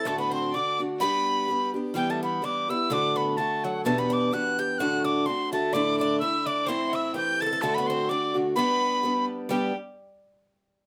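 Close, detailed microphones and light reverb frame this rollicking, lightly swung Celtic polka fragment, where an airy metal tin whistle with a crisp, chiffy attack carries the melody up front over a boxy picked archtop guitar and a metallic, double-strung Irish bouzouki, while a biting, distant fiddle sits in the background, dropping out at 1.7 seconds and returning at 5.7 seconds.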